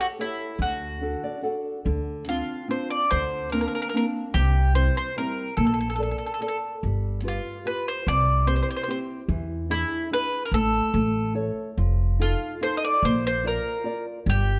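An up-front mandolin with a woody, double-string tone carries the melody in this lively, romantic Italian folk serenade, cut from a longer piece and set in 3/4 at 145 BPM with a rubato feel. A small-sounding, thumb-plucked nylon-string guitar accompanies from the start and adds a fill at 1.0 seconds, while a thumpy pizzicato upright bass with steel strings joins at 0.6 seconds, also up front. The harmony moves from A7 and D through Dm7, Bbmaj7, G7 and E7, pauses briefly, then passes through A and F7 to rest on Bb, heard through close, detailed microphones with light reverb.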